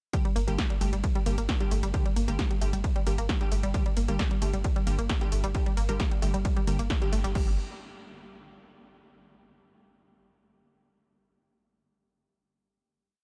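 A dark, dry production frames this complete piece of driving peak-time techno in G minor at 133 BPM, intense from the first beat as the drop runs from 0.1 s to 7.4 s. An overdriven, up-front electronic kick pounds four-on-the-floor, while a punchy analog drum machine, re-recorded in a large room, adds programmed hats, a snare backbeat, ride and crash, and a round sine sub bass with tube saturation and a low-pass filter rumbles between the kicks from 0.4 s. Over this, a lush detuned sawtooth pluck repeats an 8-step riff through tape echo, crisp wave-folded chord stabs move one shape in dotted rhythm through digital delay, both pumping against the kick, and after a band accent at 6.9 s the track closes on a final chord from 7.4 s.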